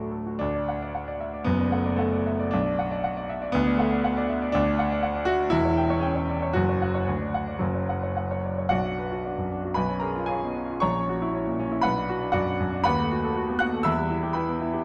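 A clear, worn baby grand piano sits up front from the start of this passionate, agitated classical piano study, played solo in 2/4 with a rubato feel that drifts between 97 and 125 BPM, moving from D major into B minor at 4.5 s and turning at 8.7 s toward restless harmony that settles on E minor at 13.9 s, all within a moderate concert hall reverb and a dark production on this fragment of a longer piece.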